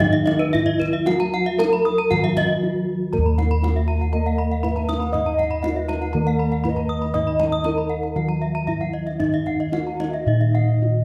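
Set in a moderate recital-hall reverb, this ceremonial, brilliant Balinese gamelan passage in Eb pelog moves at 118 BPM with uneven beats. Its bronze metallophones shimmer with paired tuning: a mellow, airy melody struck with padded disc mallets, a boxy lower accompaniment played with a wooden mallet, and two bright horn-mallet arpeggio lines, one close and dry. Beneath them, round bossed gongs carry a full, up-front bass while a deep, distant kendang adds percussion; after a brief break from 2.4 to 3.1 seconds, a breathy, reedy bansuri enters at 4.1 seconds with a second line touched by slapback echo.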